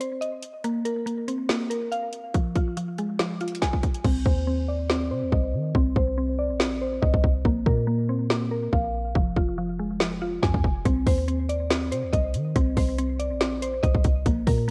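A mallet-like synth pluck sits up front with a woody, round, mellow FM tone, spinning arpeggios through chorus, a low-pass filter, analog delay and a cassette-tape haze in this melancholic, brooding trap excerpt cut from a longer piece. Alongside it, a half-time trap drum kit pairs a hard-clipped kick with a woody snare, metallic hi-hats and crash cymbal, its electronic, produced sound carrying a tape-softened edge. At 4.0 seconds a deep, boomy 808-style bass enters, a dark sine with a noise layer and a fast, decaying attack. From that point until 10.9 seconds the hi-hats drop out while a filter sweep moves over the synth pluck. The harmony circles through Cmadd9, Bbsus2 and Fm, wrapped in light reverb and digital ambience with the lo-fi character of a home cassette recording.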